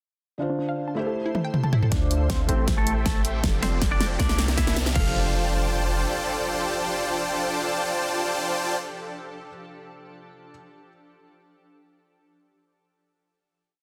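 A dense, heavily limited master with light digital ambience carries this bright, lush future bass piece at 158 BPM in a half-time feel in F major. A soft felt-muted upright piano with audible action noise plays spread chords with syncopated pushes, while a shimmering, ethereal ambient pad sustains beneath it, and a detuned unison pluck arpeggiates through a filter sweep in the intro. A big-room dance drum kit enters at 1.3 s with a fill. From 1.9 s, a clean semi-hollow electric guitar plays a repeating melody in octaves, joined by huge supersaw chords, a deep, boomy 808-style bass and a punchy electronic kick drum, while the kit lays down a half-time beat with a huge snare and hat rolls. Together they drive a filtered build as background risers and impacts lead to a final F69 chord at 5.0 s.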